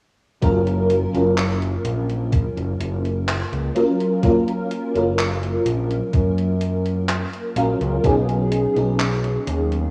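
Vaporwave in F# major at a slow 63 BPM, this faded, dreamy excerpt, cut from a longer piece, rests on an up-front, mellow FM electric piano with a soft pad layer, its detuned tone smeared by phaser, ensemble chorus and tape echo as it moves from F#maj7 to B69 at 8.0 seconds. A bright, growling fingered electric bass with overdrive sits beneath, while an overdriven, thumpy electronic kick drum runs until 8.2 seconds alongside a gated 80s digital drum machine of handclaps and hi-hat. The rough home-demo mix carries a cassette-tape haze, small-room ambience and a lush hall reverb.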